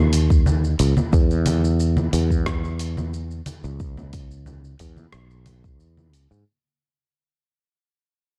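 Organic downtempo at 90 BPM in a straight 4/4, meditative and warm, this short fragment tuned to A4 = 438 Hz fades out across its 6.5 seconds as a bright, growly, punchy fretless electric bass sits up front between B1 and G#2, joined from 0.1 s by a gritty, compressed soul sampler-style kit of congas, hi-hat, rim click and shaker that sounds re-recorded in a large room, and by a deep, layered electronic kick from 0.3 s to 5.8 s, all within a dark, dry production.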